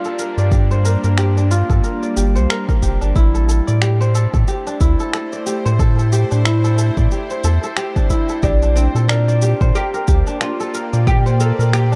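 Mystical and meditative, this organic downtempo excerpt pairs a ringing, crisp kora with delay over a tense, detuned, string-like drone with phaser and sidechain pumping, tape-warm electronic shaker and finger snaps, a round sine sub bass from 0.4 seconds, and a layered deep kick from 0.5 seconds, before a woody, fretless oud with 12-bit sampler grit and delay takes the melody at 8.4 seconds over the move to Bb6 in a dark production with light reverb.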